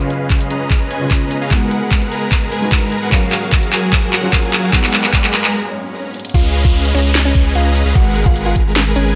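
A lush, dreamy future bass excerpt at 149 BPM in a half-time feel, where felt-muted upright piano with audible action noise and an ethereal background pad sit under huge detuned supersaw chords whose filter sweeps through a build-up, as a trap kit with a sharp snare and metallic hats, a knocking kick and background risers drive toward a break at 5.5 seconds and a drop at 6.3 seconds, when a woody, mallet-like synth pluck melody and a thick, saturated sub bass enter over pumping chords moving from C#7 to G#m7.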